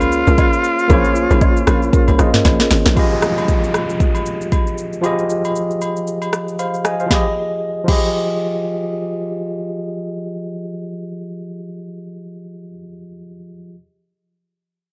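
A breathy, raspy alto saxophone with vibrato and analog delay opens this soulful, late-night amapiano excerpt, backed by a tight, punchy log drum bass, an up-front electronic drum kit with deep kick and metallic hats, mellow soft-mallet marimba stabs and agogo bells and woodblock in the background, and a clean tine electric piano that plays alone after the drums stop at 8.0 seconds, with a filter sweep on the piano and an electronic downlifter running from 3.0 seconds through the break, all in a dry, gritty hardware recording with light reverb.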